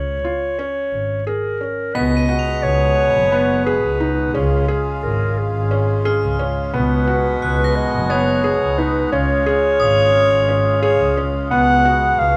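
A dark, smooth-topped clarinet opens this restless, playful chamber fragment in classical style, carrying the melody up front over soft, felt-muted upright piano arpeggios, where the action noise of the instrument is audible. Beneath them, a single bowed double bass adds a woody line with vibrato, also placed up front. The music moves in an uneven 7/8 at 176 eighth-note beats per minute in D-flat mixolydian, settling from a Db6 chord into a steady alternation between Abm7/Db and Db. At 2.0 seconds a hand-pumped harmonium enters with reedy, nasal sustained chords that seem to breathe. High crotales struck with brass mallets arrive at the same moment, adding a bell-like, shimmering texture that rings until 11.8 seconds. A light reverb surrounds the ensemble.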